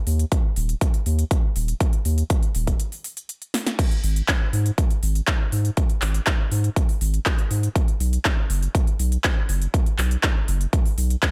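Progressive house at 121 BPM in a straight 4/4, this short cut from a longer piece carries a dreamy, expansive mood. A saturated sub bass sits up front from 0.1 seconds, deep, thick and sine-like with a fast attack and sustained notes ranging from D#1 to G#2, its pumping sidechain giving the groove a breathing pulse. An electronic kick drum enters at 0.3 seconds, punchy and layered, with a tape-warm tone and the air of a large room, placed up front alongside the bass. A big-room dance drum kit of crash cymbal, handclaps, crisp hi-hats and a punchy snare sits further back in the mix, carrying the same re-recorded room character. A break arrives at 2.8 seconds, with a drum fill at 3.5 seconds before the full groove returns, and the overall sound stays dry with little reverb.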